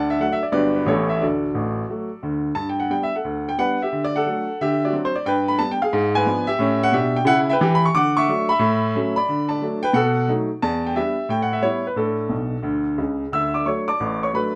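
Swung eighth notes at 179 BPM in 4/4 drive this short cut from a longer stride piano piece in D major, with the upright piano tuned to A4 = 441 Hz. The upright piano plays solo from the start to 14.6 seconds, ranging from G1 to E6, and its woody, vintage tone is smooth and up front, with long sustain. The mood is playful and exuberant, and a moderate club reverb surrounds the piano with a short decay. The harmony moves through Gmaj7, A7, a passing G#dim7, B7 and Em7 before settling on an A chord and returning to D. At 12.3 seconds a brief piano fill leads back into the opening theme.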